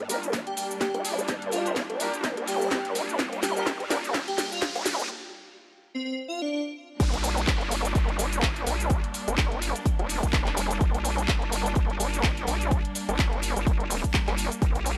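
Swaggering and gritty, this bass house excerpt rides a swung 126 BPM groove in G minor, where a nasal, resonant vowel-sweep wobble bass with tube saturation and chorus sits up front, pumping against a punchy electronic kick and a garage kit of cracking snare, handclaps, shaker, hats and crash, with a dark, very quiet reggae kit beneath. Clear, focused bowed strings hold sustained chords throughout, while mellow vintage horn stabs play until 4.0 s and an airy, dreamy lead with vibrato, chorus and delay floats until 6.6 s. A drum fill and a background riser drive the build-up into a break at 5.1 s, and the drop lands at 7.0 s in a small, lightly reverberant room.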